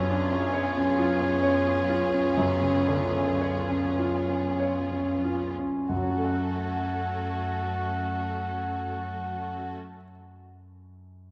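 A clear, up-front concert grand piano carries the melody in this tragic, passionate classical excerpt in F# minor, moving in a rubato 12/8 at a very slow 29-47 BPM that slows through the opening over a C#7/F# chord before settling on F# minor at 5.9 seconds. A mellow, distant clarinet and a lush, vibrato-rich violin section add second lines, a rich viola section sits in the background, and a dark, woody cello section holds a low F# bass until the strings and clarinet fall away near 9.7 seconds, leaving the piano alone in a concert hall's moderate reverb.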